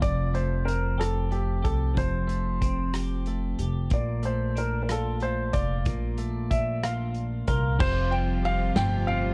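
In six-eight time, this heartfelt, romantic pop ballad fragment sets a clear, polished baby grand piano melody touched with digital delay over bright, twangy picked twelve-string electric guitar, woody pizzicato upright bass and a loose, small-room indie drum kit with a tight kick and rolled-off top, moving from Fadd9 to Bbmaj7 and back before soft, floating bowed strings drift in at 7.8 seconds within a dark, dry, warm production.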